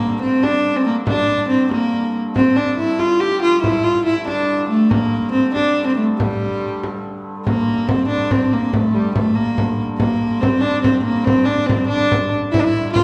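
A fretted viola da gamba and a dark, wheel-bowed hurdy-gurdy sound together from the very start of this driving, mysterious medieval dance in 6/8, with a frame drum joining at 0.2 seconds. The gamba carries the melody up front, its gut-string tone ringing with light vibrato and an airy, period-style bow. Beneath it, the hurdy-gurdy holds a low drone that is nasal and boxy, sitting well back in the balance. The frame drum supplies a close, acoustic pulse with a straight feel. The players are heard from further back in a recital hall whose generous reverb surrounds the ensemble, and a second section begins at 7.5 seconds before this short cut from a longer piece ends at 13.0 seconds.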